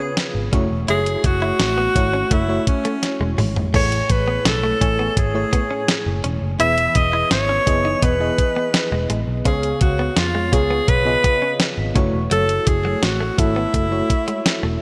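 Romantic and uplifting, this excerpt of 1980s-style pop moves at an unhurried, straight four-beat pace inside a moderate, lush hall reverb and a bright digital production. A clear, close-miked alto saxophone carries the melody up front with vibrato and a touch of delay, singing over chords that drift from C#7 to F#m7, Emaj7 and back. Beneath it, an FM electric piano with tremolo supplies mellow, decaying accompaniment with a fast attack and a faint noise layer. A direct-recorded clean electric guitar plays a compressed, picked riff in the background, glossed with lush chorus. A 12-bit digital drum machine enters at 0.2 seconds with a thumpy kick and fat snare, adding hi-hat, crash and toms, and a drum fill lands at 3.0 seconds. A vintage, foam-muted picked bass joins at 0.3 seconds, dark and round, anchoring the low end.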